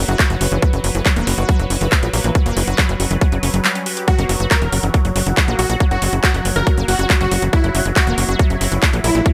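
Psychedelic trance with an alien, psychedelic mood, this short cut from a longer piece moves in a straight four-count drive. An overdriven electronic kick drum sits up front with a techno drum kit of handclaps and metallic hi-hats, while a tight sequencer bass built from sawtooth and square waves with ring modulation punches underneath. In the background, an overtone-sweeping drone holds sustained chords with moving, resonant overtones, coloured by chorus, phaser and built-in reverb. A lush, detuned unison pluck carries the riff with sidechain pumping and dub echo, and a very quiet, squelchy resonant blip pluck adds a second line. From 4.1 s, a bright supersaw stab takes the melody, treated with phaser, delay and sidechain pumping. The overall sound is dry, with little reverb on the mix.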